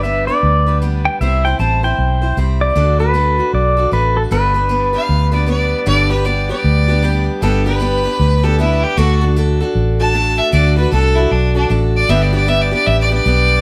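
A light reverb surrounds this sunny, heartfelt honky-tonk country excerpt, which swings easily over a round, punchy, foam-muted electric bass and a boxy parlour acoustic guitar whose fresh strings and finger squeak come through its picked accompaniment. A clean, compressed pedal steel guitar carries the melody with slide and volume swells until 5.4 seconds. A biting, intense fiddle with light vibrato enters at 5.0 seconds, briefly overlapping the steel, and takes a solo from 5.9 seconds to the end.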